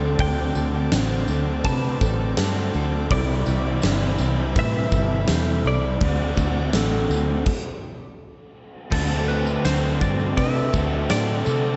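Dreamy and blissful, this excerpt of shoegaze-tinged dream pop rock moves at a straight 82 BPM in 4/4 in D mixolydian, with a twangy, bright clean electric guitar carrying the melody through lush chorus and tape echo over a warbling, brassy analog pad, a boxy, shimmering twelve-string acoustic picking arpeggios, and crunchy overdriven and raw garage guitars grinding out riffs in the background, the garage part trailing reverse reverb. A dark, round, foam-muted bass sits up front while a huge arena kit with a fat snare, punchy kick and crashing cymbals drives things alongside a very quiet, jingly tambourine, the harmony drifting from D7sus4 through Cmaj9 and D9 before a stop at 7.5 seconds. At 8.9 seconds the music lands on a third-less D7 as a very quiet, double-tracked overdriven semi-hollow guitar joins the riff, all within a hazy mix soaked in hall reverb.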